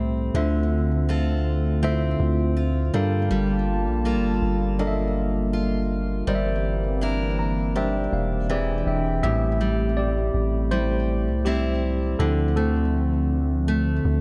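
A light, digital reverb surrounds this moody, sensual contemporary R&B passage, cut from a longer piece, where a deep, up-front 808-style bass sustains long, mellow notes beneath a dark, hollow pad that sits in the background with chorus. A bright picked steel-string acoustic guitar with fresh strings and audible finger squeak plays arpeggios through delay, while a worn, slightly out-of-tune tine electric piano with light overdrive carries the accompaniment over chords moving from Dm7 through Gm9 and C9/G to E7alt. The electric piano plays a fill at 7.0 seconds, then takes a solo from 9.2 seconds as the harmony shifts to Am7 and back to Dm7.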